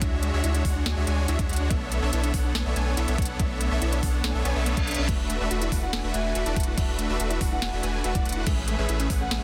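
Future bass at 142 BPM in a half-time feel, this short bittersweet, emotional excerpt in B dorian is built on huge, lush supersaw chords with a cassette-tape tint, sidechain pumping and dub echo, moving through Dmaj9#11, Bm11, E9sus4 and Amaj9 over a deep, saturated sub bass that also pumps. A knocking, overdriven electronic kick and a trap kit with a sharp snare, crisp hats and crash drive the groove, while a dark, tine-like thumb-piano pluck with chorus and dub echo plays arpeggios in the background. A reverse cymbal rises from 4.4 s, and at 5.8 s a woody, mellow marimba with soft mallets enters with a melody under digital delay, all in a dry, dense and heavily limited modern mix.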